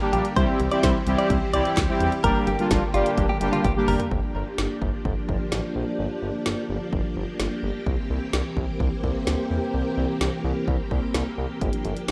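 A bold, fat synth brass and a lush vintage string machine open this driving, cool synth-pop excerpt together, the brass sitting up front with chorus, vibrato and a filter sweep, while the strings hold evolving, slow-attack chords under ensemble chorus and shimmer reverb. A clean, direct-recorded electric guitar adds a picked, compressed second line soaked in tape echo, and a smooth, saturated synth bass with a moving notch carries the low end throughout. The deep house drum kit sits up front, with a punchy kick, a woody snare, handclaps, hi-hat and toms, and it rolls into a drum fill at 3.2 s. The brass and guitar drop away at 4.0 s, leaving strings, bass and drums to ride the harmony from Gm7 to C7 and back. The whole thing has the wet, roomy feel of a rough home demo mix.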